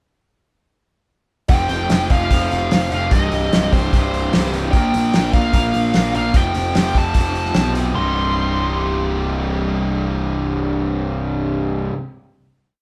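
A straight, swaggering 4/4 classic rock groove kicks in at 1.5 seconds, with a cloth-damped, thuddy drum kit (fat snare, tight kick) up front, a round, punchy fuzz bass, and two bright overdriven guitars (a distorted electric and a cranked stack tucked in the background) driving eighth-note power chords beneath a dark, smooth lead guitar's wah-tinged hook phrases, until the drums drop out at 7.8 seconds and the band rings out a gritty final chord in a live-room studio reverb.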